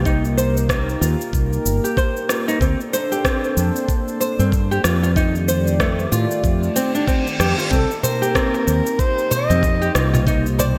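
Organic downtempo in C dorian at 94 BPM with a swung 16th feel, this mystical excerpt rests on a smooth analog pad with chorus and sidechain pumping, a round, punchy fretless bass, up-front fingerpicked nylon-string guitar arpeggios through a low-pass filter and delay, a knocking electronic kick, and shaker and rim click in gated reverb, before a reverse cymbal at 6.7 seconds ushers in an intimate, airy-bowed kamancheh melody with light vibrato and portamento at 7.7 seconds and a close, dry darbuka sitting in the background at 8.0 seconds, all set in a lush hall within a bright 1980s-style digital production.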